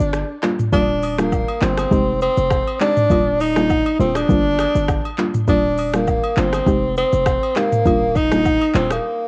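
A breathy tenor saxophone carries the melody from the start, its jazzy, scooped notes and vibrato sitting up front with cassette tape color and tape echo, over a soft, round, darker chorused pluck, a punchy 808-style bass and a produced afro-pop drum kit with a deep kick, crisp hats, snaps, handclaps, rim clicks, shaker and toms roughened by 12-bit sampler grit. At 0.7 seconds, close, dry agogo bells and woodblock slip in quietly behind the groove, which cycles through Gm7, Ebmaj7 and Fm7 with a gentle sixteenth-note swing. This breezy, sunny afrobeats passage, cut from a longer piece, has a dry, intimate home-cassette sound.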